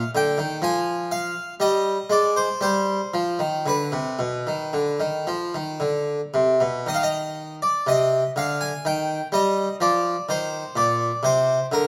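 An Eb5 opens this solemn, flowing fragment of a baroque-style suite movement in C minor, where a solo harpsichord, airy and plucked in the French manner with the full sound of two sets of strings, sits up front under close, detailed microphones at a rubato 55-65 BPM in 4/4, moving through Fm and a rootless G before its repeated opening section returns to Cm at 6.9 seconds and reaches Bb at 10.8 seconds, all within a moderate recital hall reverb.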